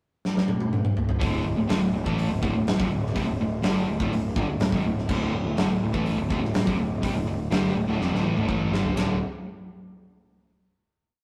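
A big, dark-toned rock drum kit sits up front in this driving, menacing hard rock piece, opening with a fill at 0.2 seconds before its punchy-kicked groove carries a power-chord riff from 1.2 seconds, played in the background by a bright overdriven electric guitar and a hollow-bodied overdriven semi-hollow guitar and doubled in driving eighth notes by a fuzzy, direct-sounding picked bass, all heard through a rough rehearsal-room sound with tube saturation and stone-room reverb until a final chord lands at 9.0 seconds.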